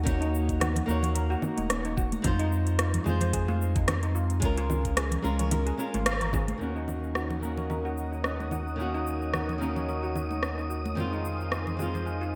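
Sunset chillout at 110 BPM in Eb dorian, relaxed and wistful, with a 16th-note swing. Fingerpicked flamenco guitar with audible finger squeak and shimmering steel pan arpeggios ride through delay and shimmer reverb over a round, deep sine sub bass, a knocking electronic kick that drops out after 6.5 seconds, a produced R&B kit with metallic hats and rim click, and dry, hard-handed congas in the background. At 6.6 seconds a filter sweep moves across the guitar as a thick, detuned unison pad swells in, joined by an airy, breathy wind-like texture at 7.5 seconds, all set in a lush hall with bright 1980s-style digital sheen.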